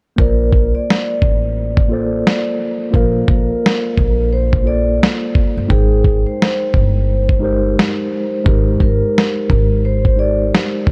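A dry, dark, warm mix opens this nostalgic, mellow lo-fi hip hop cut from a longer piece, set in Bb major at 87 BPM in 4/4 with a swung 16th-note feel. From 0.2 s a gritty, compressed sampler-style drum kit with a thumpy kick and medium-tuned snare sits up front, while a woody pizzicato upright bass holds the low end and a clean tine electric piano, heard through its built-in speakers, plays a mellow accompaniment. Soft-mallet vibraphone carries the ringing, metallic melody with slow motor vibrato over harmony that moves from Bbmaj9 to Abmaj9 at 5.7 s, and the piece runs until 10.9 s.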